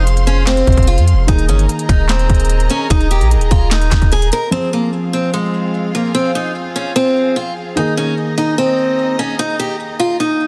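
A picked acoustic archtop guitar with a woody, boxy tone and digital delay carries the eerie, menacing melody up front in this half-time trap excerpt at 148 BPM in F minor, over a dark, mellow grand piano and soft sul tasto strings moving between Fm and Ebsus4, while a deep, boomy 808 bass and a trap kit with hard-clipped kick, sharp snare, crisp hats and handclaps drop out around 4.4 seconds, leaving guitar, piano and strings to carry on in a dense, heavily limited mix.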